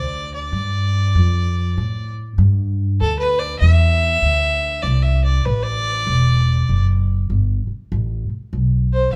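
A big studio room with a moderate reverb surrounds this short cut from a longer acoustic country blues piece, played by a fiddle and upright bass together live in one room. The mood is laid-back and swaggering, at 98 BPM in 4/4 with a swung eighth-note feel, and the tuning sits slightly high with A4 at 442 Hz. A single bowed fiddle carries the melody between A4 and F5, its tone rich, biting and nasal with an earthy body and a smooth top, placed up front. The pizzicato upright bass holds the low end from E1 to A2 with a woody, warm sound from steel strings, also up front and somewhat louder than the fiddle. Both parts play from 0.0 to 9.2 seconds, moving from a chordless opening through G5 to D7 at 3.0 seconds before the harmony drops away at 7.9 seconds.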